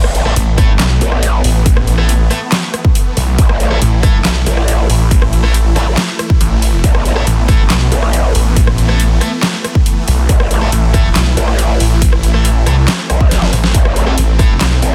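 A half-time 4/4 groove drives this aggressive, heavy wobble dubstep excerpt: a punchy, tape-warm electronic kick and an overdriven dubstep kit of deep snare, bright hats, handclaps and rim click, with a short drum fill at 13.3 seconds. Two basses sit up front: a saturated growl bass with formant-filtered wobble and chorus, and a snarling, detuned sawtooth bass with distortion and a moving notch. Huge, lush supersaw chords pump under sidechain with phaser, a scooped, distorted electric guitar throws picked stabs through dub echo, and a barely audible impact opens the clip within a dense, heavily limited mix that carries little reverb.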